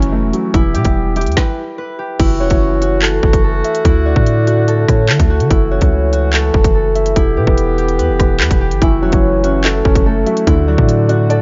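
This dark, ominous drill cut sits in a small room with a dulled top end, a clipped fragment of a longer piece. The up-front electronic drum kit drives a half-time feel with a hard-clipped kick, woody snare, crisp hi-hats, rim clicks, handclaps and crash cymbal, all carrying a tape-softened grit. Beneath it, a deep, sine-toned 808-style bass rings out long, dark notes with a fast attack that then decay, while a woodwind section holds tight, classical-style sustained chords with light vibrato. A ringing, fingerpicked concert harp carries the melody from 0.5 seconds, placed up front and trailed by tape echo. At 2.4 seconds, a round, octave-layered synth lead joins in the background as a second line, its triangle-and-sine tone thickened by a sub octave, chorus, vibrato and tape echo. A soft, felt-muted upright piano, mellow and intimate with audible action noise, plays accompaniment at the opening and returns at 8.8 seconds.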